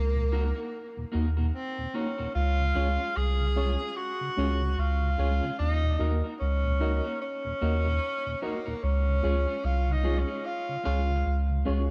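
Sunny and uplifting, this reggae excerpt at 74 BPM in Db major swings gently over Ebm and Db chords, with a punchy, roomy tenor saxophone carrying the melody through tape echo up front beside a deep, round dub sub bass, while a flute-like tonewheel organ with chorus vibrato and slow rotary speaker and a dark, picked clean electric guitar with tape echo sit in the background, and a reedy electric piano with fast tremolo adds stabs from 2.8 seconds in an echo-heavy mix with light reverb.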